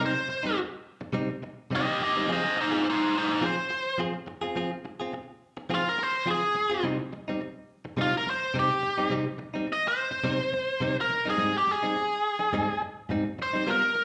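A biting, overdriven lead guitar carries the melody up front through a brooding, mournful blues solo in C minor at 105 BPM, its lines given a swung feel and coated in plate reverb and slapback echo. Beneath it, a twangy, compressed clean electric guitar, recorded direct, punctuates the changes from Cm to Fm and back, settling on Abmaj7 near 11.4 seconds, with its own plate reverb and slapback. The whole passage, cut from a longer piece, sounds like a live gig heard through the venue's PA, wrapped in a wet club reverb.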